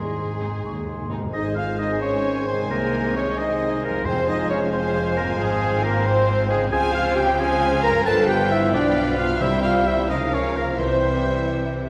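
In 6/8, this restless, dramatic romantic orchestral passage from a fast movement sets a lush, bowed violin section's vibrato melody over second lines from clear oboe, clarinet, an airy, hollow small flute group and a background chamber violin section, with a present bassoon and very quiet violas accompanying, ringing thumb-plucked harp arpeggios, rich cellos and distant double basses holding the bass, and mellow French horns and tight trombones entering on sustained chords at 1.3 s after a round, soft-mallet timpani fill opens the passage, set in a wet scoring-stage reverb.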